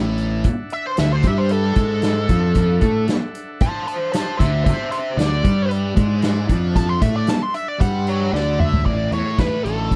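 A bluesy overdriven lead guitar takes a solo from 0.7 seconds, its distorted, picked tone coloured by wah and tape echo as it ranges from A4 up to C6. Beneath it, a double-tracked fuzz guitar grinds out a thick riff while a fuzz-driven fingered bass, punchy and overdriven, anchors the low end in this hazy, hypnotic psychedelic rock excerpt at 114 BPM in a straight 4/4. A drum kit played with soft mallets sits up front yet sounds roomy and distant, with a punchy kick, a medium-tuned snare, toms, hi-hat and crash, its top end rolled off, and a fill arrives at 8.3 seconds. A vintage, buzzy combo organ holds clean sustained chords in the background until 8.8 seconds, and the harmony rests on Dadd9 before moving to Asus4 at 8.9 seconds. The mix is dry, carrying little reverb.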